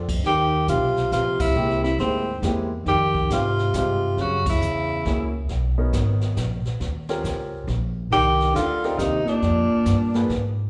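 Small-group swing and bop jazz in a swinging three-four, cut from a longer piece, with a warm, sophisticated mood and the feel of a live club set heard through the venue's sound system. A tenor saxophone carries the melody with vibrato, subtone and scooped notes, its tone warm, distant and roomy, while a dark, breathy baritone saxophone with a smooth top moves beneath it on a second line. Both horns carry a slapback echo, drop out at 5.3 seconds and return at 8.1 seconds. Underneath, a grand piano accompanies with a present, polished sound, short sustain and its own slapback echo, alongside a woody, thumpy pizzicato upright bass sitting up front. A brushed drum kit with dark cymbals, a high-tuned snare and a boomy kick sits lowest in the mix, and the band hits two accents together as extended chords pass by in a light club reverb.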